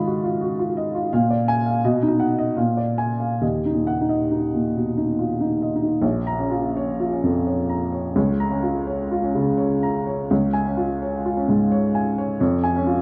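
Romantic classical character piece for solo upright piano, stormy and brooding in a rubato 3/4, its woody, up-front tone carrying long sustain through a moderate recital-hall reverb and a dark, warm production, moving from a restless opening over shifting seventh chords into a new section at 6.0 seconds, cut from a longer work.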